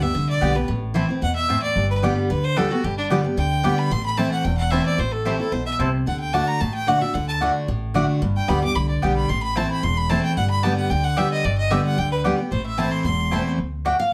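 A clear, smooth fiddle carries the melody up front, bowed by one player with light vibrato, soloing from the start through about 13.6 seconds and ranging from D4 to D6. This is a haunting, driving bluegrass passage in A dorian at 223 BPM in a straight 4/4, cut from a longer piece and tuned slightly below standard pitch. Beside the fiddle, a full-bodied picked dreadnought acoustic guitar sits up front as accompaniment, spanning E2 to G5. A round, double-strung mandolin adds picked stabs from 0.4 seconds, while a woody, thumpy upright bass with steel strings plays dark pizzicato lines low in the range. The harmony moves mainly between G and Am, with D arriving at 6.1 seconds, across two passes of the same section, all heard from further back in a studio room with a wet, short reverb.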